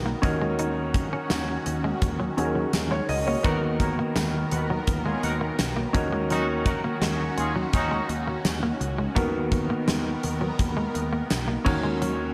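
A gated 1980s drum kit sits up front in this dramatic, moody pop piece, its fat snare, tight kick, bright cymbals, hi-hat, crash and tambourine ringing out in a big, airy, polished room. The tempo is a straight 84 BPM in 4/4, in Eb minor, with the harmony moving between Ebm7 and Bmaj7/D#. A clear, intimate grand piano carries the accompaniment with long sustain, audible action noise and a slapback echo, while a fretless electric bass holds the low end with a warm, direct tone and subtle chorus. Behind them, a lush, thick unison pad of detuned sawtooth and square waves with a sub octave sustains slow-attack chords through chorus and phaser, and a clean, compressed semi-hollow electric guitar plays a picked riff with a hollow-body character, subtle chorus and slapback echo. A tight, vintage-sounding horn section with light vibrato adds stabs from 3.4 to 8.0 seconds, and a wet hall reverb gives this fragment of a longer piece a big arena sound.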